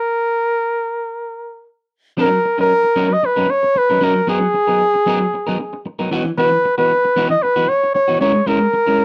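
Dry and close, this short disco passage has the intimate sound of a 1970s studio, with only a light touch of reverb. At 114 BPM in a straight 4/4, the mood is joyful and danceable from the first bar. A clear flugelhorn carries the melody from the start, playing alone over an unharmonised opening in a jazz style, with a soft attack, vibrato and scooped notes. At 2.2 seconds a twangy electric guitar joins as accompaniment, its fingered tone warm and slightly broken-up, sitting just at the edge of break-up. Both instruments sit prominently in the mix, with the flugelhorn a touch louder than the guitar. Beneath them the harmony moves through F#6, G#m9 and C#m11/E before reaching A#m7b5/G#, and the recording ends at 9.0 seconds as part of a longer piece.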